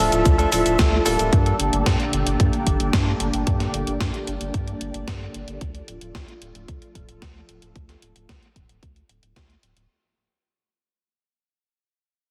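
A straight 4/4 pulse at 112 BPM drives this bittersweet, nostalgic italo disco fragment in D minor, where a punchy, layered electronic kick and a gated 80s drum machine of cabasa, hi-hat and gated-reverb snare join a round, deep analog bass, while a lush sawtooth string machine with phaser, ensemble chorus, 12-bit grit and a filter sweep holds sustained chords moving from Dm to Gmadd9 and back, and a bright, twangy clean guitar adds delayed stabs only until 1.6 seconds, all within a heavily compressed radio sound that fades out across the whole passage.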